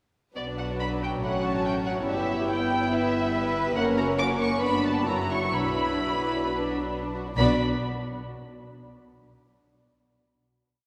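Restless and dramatic, this quick classical-period movement for string orchestra in B minor moves at roughly 127-143 BPM in 4/4, its pulse pulled by rubato. A warm viola section opens at 0.3 seconds with pure, floating sustained chords played sul tasto, sitting up front with a soft attack. At 0.4 seconds a dark violin section carries the lush, woody melody with vibrato, while a second violin section adds intimate, smooth-topped flowing broken chords and sustained chords beneath it, and a rich double bass section doubles the bass line in sustained tones. A dark cello section joins at 1.2 seconds, close yet in the background, offering a counter-melody over sustained bass with light vibrato. The theme passes through B minor, F# minor, E minor, F# and a Gmaj7 before an F#7 pulls back to B minor, and a final chord arrives at 7.4 seconds, all wrapped in a church reverb with a long 3.1-second decay.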